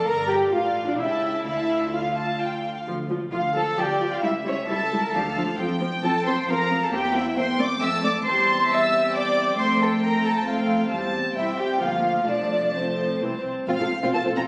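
This short cut from a longer piece sounds as if captured on a phone in the room, with added studio reverb and compression lending the string orchestra a wet scoring-stage bloom. It is a quick, cheerful classical-period movement in 3/4 at around 126-138 BPM, played with a lively rubato feel, starting in D minor and moving to F major from 8.3 s. A rich, pure first violin section carries the melody with a soft, floating sul tasto tone that sits distant in the mix, while a dark, woody second violin section with lush vibrato spins a second line across a broad range. The viola section, intimate and up front with light vibrato, fills in the accompaniment, and the cellos supply a smooth-topped bass that shares the low end with a close, quiet double bass section. All five sections play bowed from the opening to around 14.4 s, moving through chords such as Dm, A7/C#, F and C/E before settling on F at 13.7 s.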